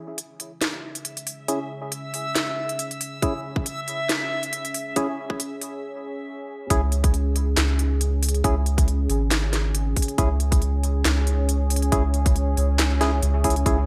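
A half-time groove at 138 BPM with a 55% swing on the sixteenths drives this cavernous, meditative piece of deep dubstep in C# minor, cut from a longer work and resting on a single C#m chord. A deep, moody ambient pad built from detuned sawtooth and sine layers with a sub octave opens at 0.0 s, its slow attack and long release softened by chorus and its own reverb, while an up-front garage kit of cracking snare, crisp hats and handclaps, tape-warm and re-recorded in a large room, enters just after. From 1.5 s a hollow, organ-like stab with a noise layer adds dark, decaying hits through chorus and dub echo. A bright, reversed granular texture swells dreamily on E5 alongside it until 5.8 s, and a tight electronic kick joins at 3.2 s, as filter sweeps on the stab and pad shape the build-up toward a brief break. The drop lands at 6.7 s, where a soft, round sub bass of triangle and square waves settles between G#1 and C#2 beneath light reverb and a high-pass filter on the overall sound.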